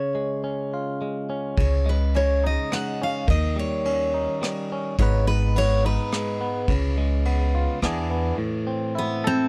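Heartfelt and hopeful, this acoustic folk-pop ballad sways in 3/4 at 106 BPM, a short cut from a longer piece. A full-bodied, picked jumbo steel-string guitar carries the melody over a bright, twangy, compressed clean electric guitar recorded direct and sitting up front. At 1.6 s a woody, thumpy pizzicato upright bass with gut strings joins alongside a vintage brush kit from a small room, whose punchy kick, rim clicks and dark ride cymbal have a rolled-off top. The dry mix moves through chords such as C#sus2, D#7, G#m and C#7, then turns to E7 and an A minor chord at 8.4 s.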